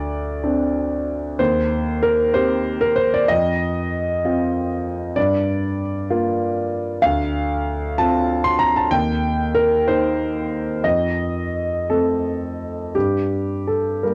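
A grand piano opens on a Csus2/D chord, setting a reflective, melancholic tone in this short cut from a longer neoclassical minimalist piece. The piano carries the whole recording by itself from 0.0 to 14.1 s, reaching from D2 up to C6. It moves in a rubato 6/8 at roughly 55-66 BPM counted in dotted quarters, in G minor with tuning at A4 = 439 Hz. The harmony drifts through Eb6, F5, Gm7 and Dm7, returns to Eb6 and F7, then settles on Gm at 12.9 s. The instrument sounds intimate and natural, placed up front with a deep bass and audible action noise. Captured at home on cassette with light reverb, the recording has a close, tape-colored character.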